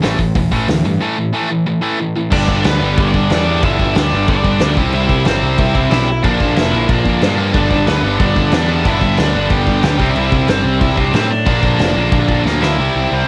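A raw, dry home cassette recording catches this rowdy, energetic punk rock excerpt in a straight four. Two picked guitars drive the riff, one overdriven and up front and a tighter distorted one set in the background, over a round, fuzz-laden bass and a loose, distant, roomy acoustic kit with dark cymbals and a tight kick. After a break from 1.0 to 2.3 seconds, a bright lead guitar melody enters over chords moving through G, C and B-flat, and a drum fill at 12.5 seconds closes the passage.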